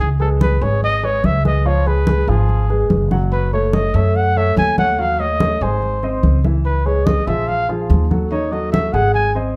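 A dark, up-front trumpet leads with light vibrato, soft attacks and scooped notes over a pizzicato, woody upright bass, a warm upright piano with long sustain and damped, thick-skinned congas played with soft hands in this sultry, fiery Afro-Cuban jazz excerpt, all set in a large studio's moderate reverb.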